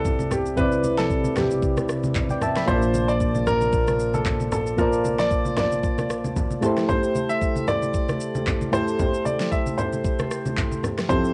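A polished, up-front baby grand carries the soulful amapiano melody through tape echo and cassette grit, over round, mellow, chorused electric-piano-like synth keys, a punchy, funky analog bass that drops out at 6.6 s, an overdriven R&B kit with knocking kick, fat snare, rim clicks, handclaps and shaker, low-tuned thick-skinned congas, and a barely audible electronic impact at the opening, set in a home-cassette ambience as the chords move from Cmaj9 to Bbmaj7 to Am7.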